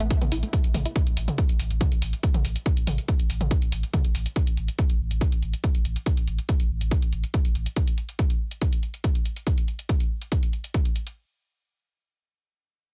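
A heavy, layered electronic kick sits up front throughout this intense, driving slice of peak-time techno, carrying a tape-warm character from being re-recorded in a small room. Around it, a punchy analog drum machine supplies hi-hat and toms with the same small-room tape coloring, running through the full clip. A deep, round sine sub bass holds a low A with a fast attack and mellow sustain, thickened by tube saturation, darkened by a low-pass filter and pumping against the kick until it drops out at 7.7 seconds. At the very start, a bright analog pluck riff built from detuned sawtooth and square waves with a noise layer and filter sweep flickers between A3 and E4, dressed in chorus, overdrive, digital delay and sidechain pumping before it falls away at 0.9 seconds. A digital ambience frames the mix in a straight, relentless 4/4 pulse, and the whole thing is cut from a longer piece.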